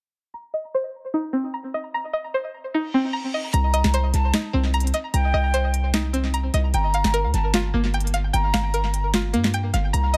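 Melancholic and hard-hitting, this trap-flavored hip hop excerpt in C minor moves at 150 BPM in a half-time 4/4 feel, set in an echo-heavy digital ambience. It opens with a bright, twangy string-like resonator pluck playing arpeggios up front, treated with chorus, tape echo and a low-pass filter sweep over the first seconds, while a reverse cymbal effect appears briefly from 2.9 to 3.5 seconds. At 3.5 seconds the track drops into its fuller second half: a punchy, heavy 808-style bass with a fast attack and decaying tail sits prominently in the mix. An electronic trap drum kit brings finger snaps, crisp hi-hats and a sharp snare, roughened with overdrive and tape echo. Above it all, a distant, airy silver concert flute with a straight tone adds a second line between G5 and Bb5, its notes trailing tape echo as the harmony shifts from Cm7 to Gm7 at 6.7 seconds.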